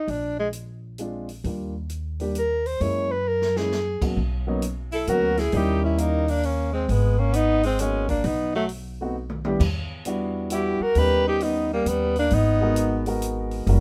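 Warm and swinging, this excerpt of small-group jazz moves at 133 BPM in a swung 3/4: a breathy, subtone alto saxophone carries the melody up front over woody, thumpy pizzicato upright bass and a small-room drum kit with dark cymbals, a boomy kick and a couple of fills, while an intimate grand piano with audible action noise and long sustain accompanies from 1.0 s, and a clear, close-miked tenor saxophone with vibrato adds a second line from 4.9 s as the harmony settles into B major, all under light reverb.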